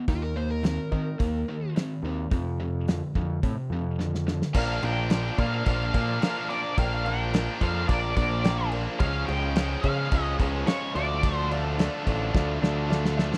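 A tight, bright distorted guitar riff opens this driving, confident classic rock excerpt at 108 BPM in straight 4/4. It is joined at once by a growling, round overdriven bass up front, a thuddy cloth-damped drum kit with a fat snare and dark cymbals, and a brief overdriven slide guitar line that stops at 1.7 seconds. After a drum fill, another distorted guitar riff enters in the background at 4.5 seconds, and the second part from 4.6 seconds adds an octave-fuzz lead melody with slapback echo, a woody, boxy upright piano and a very quiet, shouting tonewheel organ through a fast rotary speaker. It is all within a dry, close 1970s-style studio sound with small-room ambience, a faint mains hum and a closing drum fill.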